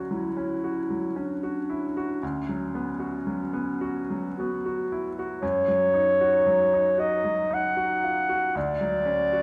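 Classical impressionist duo for clarinet and grand piano, drifting at 57 BPM in a rubato 3/4 with a dreamy, luminous mood. The clarinet carries the melody up front as a solo voice, its tone dark with a smooth top, played in a classical style across a range from C#4 to F#5. Beneath it, a baby grand piano supplies the accompaniment, its sound bright and brilliant yet intimate and natural, with audible action noise from the instrument. Both parts play together throughout the 9.4 seconds, moving through harmonies of Dmaj7, Bmadd9/D and F#5 before returning to Dmaj7 at 8.6 seconds. A recital hall reverb with a 1.3-second decay wraps the duo in a wet, spacious ambience. The passage is cut from a longer piece.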